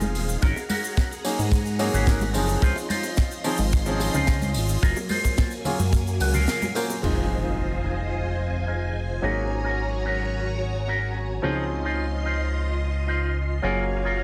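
A fat, detuned sawtooth analog bass with tube saturation sits up front in this sunny, groovy nu-disco excerpt at 109 BPM in Ab mixolydian, joined by a tight, dry acoustic kick and a polished funk kit with a high-tuned snare, cabasa, hi-hat and crash, while bright congas, tambourine and bongos sit in the background. A dark, picked electric guitar through an envelope filter plays a riff, a clear concert grand piano with short sustain adds pumping, delayed accompaniment, and a lush vintage string machine holds phased, chorused chords over a progression moving from Ab9sus4 through Dbmaj9, Gbmaj9 and Fm7. After a guitar fill and a brief break, the drums and percussion drop out at 7.0 seconds as an electronic impact hits and a filter sweep runs across the clean guitar, all in light studio reverb.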